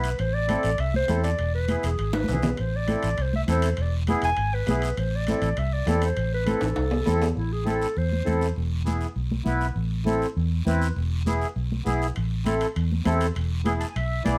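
A breathy, jazz-style clarinet leads this driving, fiery cumbia clip at 200 BPM in A harmonic minor, taking a solo with vibrato, scooped notes and a soft subtone before it drops out at 8.6 seconds. Beneath it, a reedy, airy accordion with slow beating sits up front as accompaniment, while a dark, round, foam-muted electric bass with a vintage amped tone anchors the low end. The percussion blends a raspy, close guiro, damped high-tuned congas with a thick-skinned softness set in the background, and ringing metal-shell timbales in a small room that fall away at 7.3 seconds and return at 12.2. The harmony rocks between A minor and E, closing on E7 as the accordion adds a brief fill. Light reverb gives the mix a touch of space, and the passage is cut from a longer piece.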